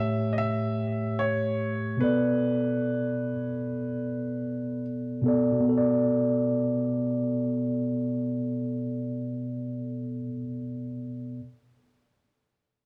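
Melancholic and hazy, this fragment of a longer hip hop piece in B minor sits at 74 BPM with a swung 16th-note feel, as a mellow, clean, up-front tine electric piano carries the accompaniment over A7 and Bm7 chords through 11.4 seconds while an intimate, woody upright piano with audible action noise and long sustain plays a brief melody through analog delay until 4.8 seconds, the mix framed by cassette tape tone and light small-room reverb.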